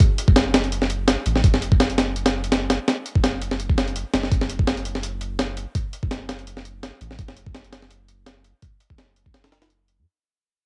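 A dark, frenetic drum and bass cut in the jungle style runs at 167 BPM in 4/4, its sixteenths carrying a light swing, in F# minor and tuned slightly sharp of standard pitch. A breakbeat sampler-style kit drives it from the start, with hi-hat, a thumpy kick and a medium-tuned snare, sounding compressed, pitched up and gritty, with a tape-warm cassette grit and sitting up front. Beneath it, a soft dub sub bass enters at 0.3 seconds, deep and round with a triangle and square wave tone, a fast attack and sustained notes moving between F#1 and F#2, mixed well below the drums. Light reverb and a digital ambience surround the parts, and the whole thing carries the character of a home cassette recording. Cut from a longer piece, this short section fades out across its full length, ending at 10.1 seconds.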